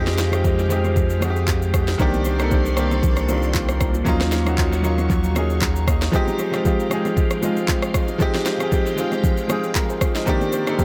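A clear, worn baby grand piano sits up front with analog delay over a swung 116 BPM amapiano groove in F minor, moving through soulful late-night minor-ninth chords while a swirling, vintage string machine with ensemble chorus and phaser holds sustained chords, a deep saturated sub bass drops out at 6.1 seconds, an electronic afro-pop kit with a deep kick, sharp snare, handclaps, rim click and shaker drives from the front, and very quiet close, dry bongos and congas fill out the echo-heavy digital ambience of this excerpt.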